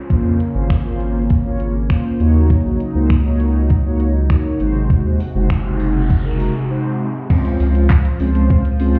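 Driven by a clean, sampler-style 12-bit drum machine with a thumpy kick, this carefree, summery dance-pop excerpt rides a deep, round analog bass and mellow, detuned synth brass that pump with the sidechain alongside a shimmering retro pulse-width pad, while a downlifter and noise sweep murmur in the background until 7.3 seconds, leading into a break at 6.7 seconds, a barely audible hollow group handclap at 7.9 seconds, and a muffled, through-the-wall sound in a stone room.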